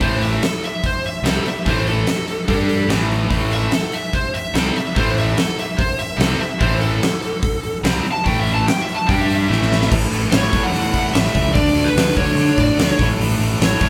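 A swaggering hard rock excerpt opens on an overdriven lead guitar solo through a small cranked amp, up front over a bright, compressed distorted guitar riff, a second tight distorted guitar in the background that drops out at 9.9 seconds, a round, fuzzy fingered bass, and a huge arena drum kit with a fat snare and punchy kick whose fill at 9.5 seconds leads into a powerful new section, the band playing live together in a large reverberant room.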